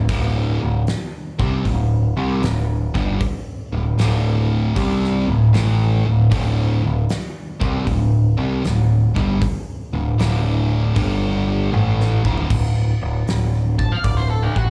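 A double-tracked fuzz guitar riff with slapback echo opens this driving, raunchy blues-rock and southern-rock cut at a swung 77 BPM, up front beside a growling, overdriven picked bass and a huge arena drum kit with a fat snare, punchy kick, bright cymbals and a pumping room sound, all heard as a live gig through a club PA, until a drum fill at 11.7 s leads to the riff stopping at 12.5 s and a dark octave-fuzz lead guitar entering at 13.8 s for a solo.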